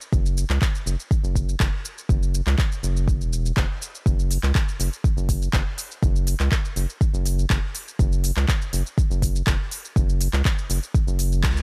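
Crisp electronic hats, handclaps and shaker from an afro-pop drum kit open this warm, spiritual afro house fragment at 122 BPM in a straight 4/4, joined almost at once by an up-front electronic kick with a deep thump and a round, dark analog bass whose square-and-sine filter pluck, fast attack and sustained tone pump under sidechain between E1 and C#2, set in a dry room before a band accent at 11.4 seconds.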